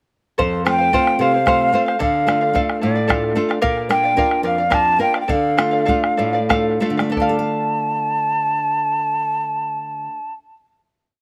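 Andean folk in a wistful, earthy 6/8 at 60-74 BPM in D minor, this brief whole piece sets an airy, hollow cane quena up front with vibrato and slapback echo, spinning a motif-based melody over a shimmering fingerpicked and strummed charango (also echoed), a bright classical nylon-string guitar's oompah bass notes and chord figures, and a round, close bombo, slowing from 3.6 seconds into a final chord at 7.2 seconds, with the bombo stopping at 7.5 seconds, all under light outdoor reverb.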